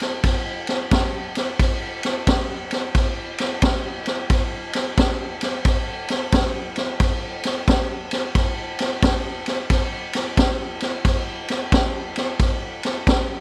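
A laid-back 4/4 blues swing groove rolls along on a vintage acoustic drum kit alone, its punchy kick, high-tuned snare and dark ride cymbal sitting up front with a mid-forward, rolled-off top and light reverb in a soulful, 13-second cut from a longer piece.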